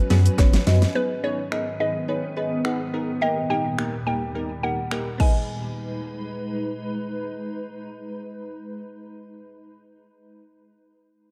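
A drum fill opens this bittersweet, driving dance-pop fragment, alongside a soft-mallet marimba carrying a woody, rounded melody through tape echo and a glassy FM pad holding ethereal sustained chords with ensemble chorus, tremolo and sidechain pumping. A crisp, detuned wavetable chord stab adds decaying accompaniment, while a deep sine sub bass sounds only briefly at the start, gone by 0.9 seconds. The punchy, up-front electronic drum kit of kick, fat snare, hi-hat, shaker, finger snaps and crash drives the straight 4/4 until 5.3 seconds, and a hollow, dry group handclap flickers in the background near the opening. At 1.0 seconds a mallet-like FM synth pluck joins with a second, warbling, vintage-toned melody, treated with chorus and tape echo. The harmony moves from a suspended opening chord into minor territory, and the production is dark and warm with light reverb.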